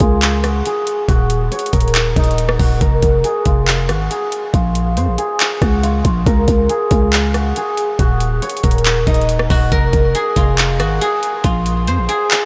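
Hip hop trap in a half-time feel, eerie and brooding, where a silvery, ringing guzheng picked with fingerpicks carries the melody through a tape echo and a low-pass filter that sweeps from 0.0 to 9.7 seconds. Beneath it, a growling, buzzy 808-style bass with a fast attack and a decaying tail sits up front alongside a produced electronic trap kit of knocking kick, metallic hi-hats, handclaps and rim clicks. Chords cycle through Db, Ebm, Fm and Bbm before landing on Bb5, and a huge ambient reverb soaks the whole mix in a dreamy haze across this brief fragment of a longer piece.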